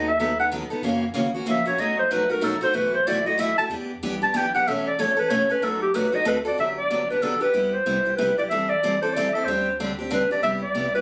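A lively 3/4 swing at 188 BPM drives this excerpt of acoustic string jazz manouche, where a breathy, intimate clarinet with light vibrato and scooped notes takes an up-front solo through plate reverb until 6.6 s, when the music settles into G major; a bright, boxy picked steel-string acoustic guitar comps close alongside it, while a round, dark analog bass sits deep in the background, all captured by a phone in a compressed club room with moderate reverb.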